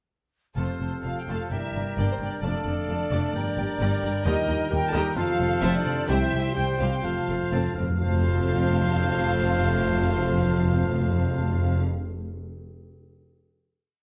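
In a straight 4/4 at 130 BPM in F major, this triumphant, heroic adventure film cue opens at 0.6 seconds with a full orchestra: a lush, focused violin section carries the melody with vibrato and doubles the tune at the octave. Around it, bright clarinet, an airy flute ensemble and oboe voice sustained chords in the rhythm of the tune, with the oboe answering at phrase ends, while a very quiet second violin section and a distant viola section with portamento drive a rhythmic ostinato. Tight French horns and soft trombones hold chords, a roomy trumpet adds stabs, the harp rocks through ringing, thumb-plucked broken chords, and cellos and woody double basses drive the bass line. Hard-mallet timpani enter at 5.2 seconds with a fill at 7.0 seconds before the final chord rings in a moderate recital hall reverb from 8.0 seconds.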